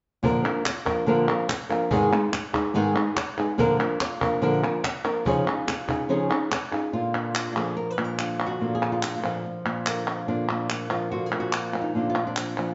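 A fingerpicked flamenco guitar carries the melody up front, its tone warm with finger squeak, while a second guitar sits further back playing stabs on fresh strings. This short flamenco excerpt feels intense and passionate, moving in a straight four-beat pulse through chords of Bb, Abm and Dbadd9 before returning to Bb. Crisp palmas hand claps join at 0.5 seconds and stay close and prominent, and a woody, saturated cajon with faint snares adds a compressed thump until it stops at 6.7 seconds. That leaves guitars and claps alone for the second half. The band plays live together in a stone room whose damp reverb lingers briefly, and the recording has a dark top end.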